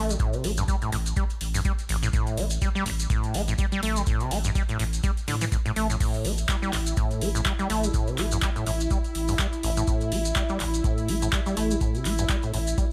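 A rubbery, resonant sawtooth acid bass riff with overdrive, subtle chorus and tape echo opens this hypnotic, driving acid house excerpt in A minor at 124 BPM with a 16th-note swing, joined by a thick sine sub bass that pumps with sidechain, as an overdriven deep electronic kick, a booming tape-warm analog drum machine with metallic hi-hats, handclaps and crash cymbal, and grainy acoustic maracas fill out the groove, before a lush detuned unison pad with chorus and phaser swells in on sustained chords at 6.3 s, all in a moderate studio reverb.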